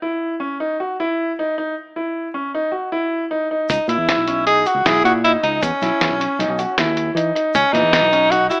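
Counted in a straight 5/4 at 156 BPM, this tense, intricate progressive instrumental opens with a clear grand piano playing arpeggios alone over a rootless C#madd9 before the band joins at 3.7 seconds. A vibrato-laden tenor saxophone takes the up-front pop-style melody, a dark, round and punchy fingered bass anchors the low end, a muffled, compressed sampler-style kit thumps out kick, snare and hi-hat, and a grainy tube shaker sits in the background as the harmony moves through C#m9 and E5. The fragment, cut from a longer piece, has the rough feel of a home demo with an AM-radio tone and a light, small-room reverb.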